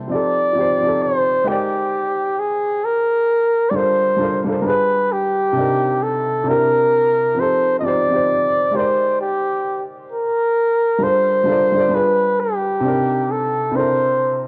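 This lo-fi hip hop excerpt drifts at 66 BPM with a lazy 16th-note swing, its reflective, hazy mood carried by jazz chords such as F7, Abmaj9#11 and Cm9. A dark, woody upright piano accompanies throughout, intimate and short in sustain with audible action noise, its sound dulled by cassette tape and a low-pass filter. Up front, a mellow flugelhorn sings the jazz-style solo melody with a soft attack, gentle vibrato and smooth top, softened by a low-pass filter and bathed in plate reverb inside a wet booth ambience with the lo-fi character of a home cassette recording.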